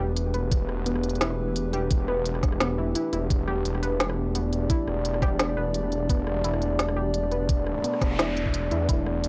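A knocking electronic kick sits up front in this tense, dark half-time drum and bass, entering at 0.5 seconds beside an overdriven kit of woody snare, rim click and smooth hats, all over a deep, rumbling detuned saw bass. A moody, nasal analog pad holds sustained chords with chorus and sidechain pumping, while a warbling, lo-fi pluck spins arpeggios through chorus, cassette tape and analog delay. The dry, gritty hardware sound stays on a single E minor chord, and a faint noise sweep enters at 7.7 seconds near the close of this cut from a longer piece.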